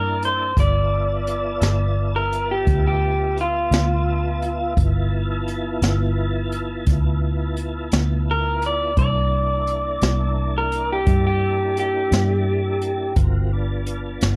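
Gritty and rollicking, this slow blues excerpt in 12/8 at 57 BPM sits in G mixolydian, with an up-front, slightly broken-up electric guitar through a small old amp carrying the lo-fi, compressed melody until 13.1 seconds over smooth tonewheel organ chords with key click, chorus vibrato and a slow rotary speaker, a dark, round, foam-muted fingered electric bass, and a small-room jazz brush kit with boomy kick, hi-hat and snare entering at 0.2 seconds, all moving through C13 and G13 chords under light reverb before settling on G9.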